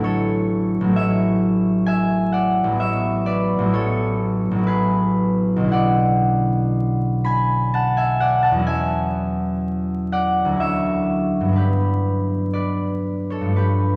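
In a lilting 3/4 with a free, rubato pulse hovering between 56 and 66 BPM, this classical solo harp piece unfolds with a graceful, serene air in A major. The concert harp carries the entire performance alone, its fingerpicked strings ringing across a span from A1 to B5 and sitting up front in the sound. The harmony opens on an A6 chord, moves to Bm11 at 5.7 seconds, then drifts through E13, Dmaj9 and Gmaj7 before this short passage is cut from the longer work. A recital hall reverb lends the acoustic harp a generous, lingering bloom, as befits a church or concert hall setting. A vinyl crackle adds a gentle patina of age to the recording.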